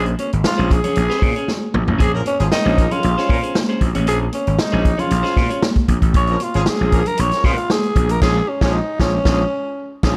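Lightly reverberant and dark-toned, this 10-second funk clip, cut from a longer piece, has a funky, sly mood over a Bbm9 chord. Up front, a gritty slap bass, overdriven, bright and growly, sits beside a punchy vintage drum kit with a natural studio-room sound and a medium-tuned snare. The drummer plays a fill at 1.5 seconds. A growling tenor saxophone carries the melody in a breathy, raspy jazz-style solo with a soft attack. An electric guitar at the edge of break-up adds picked, compressed accompaniment through spring reverb until 5.6 seconds. Further back, a horn section with light vibrato and tube saturation enters at 2.1 seconds, and high-tuned, ringing congas played with soft hands sound distant in a large room before the band hits a closing accent from 8.2 seconds.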